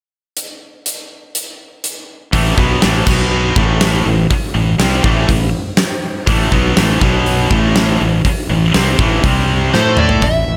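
An aggressive, driving hard rock passage in A minor at 122 BPM opens with a huge arena drum kit alone, its punchy kick, fat snare, toms, hi-hat and bright crash cymbals sitting up front in a hall-like space. At 2.3 seconds the band crashes in: a heavy high-gain guitar with a bright, distorted edge and a cranked stack guitar tucked in the background, both picking riffs over chords that move from A5 and B5 to Am. A fuzz fingered electric bass growls underneath with a warm overdriven tone, anchoring the low end. Near the close, a drum fill arrives as a bluesy overdriven lead guitar steps up front at 9.7 seconds with a short melodic line colored by slapback echo. Light reverb and a small room ambience surround the playing, and the passage, cut from a longer piece, ends at 10.6 seconds.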